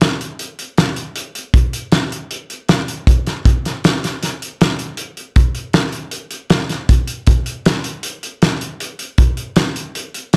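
A straight 5/4 pulse at 157 BPM drives this short rock cut from a longer piece, giving it an intricate, playful character. A loose indie acoustic drum kit carries it alone from 0.0 to 10.4 seconds, with hi-hat, a tight kick and a fat snare sitting up front in a small room. The kit sounds warm with a rolled-off top, and the dark, warm production adds a touch of light reverb.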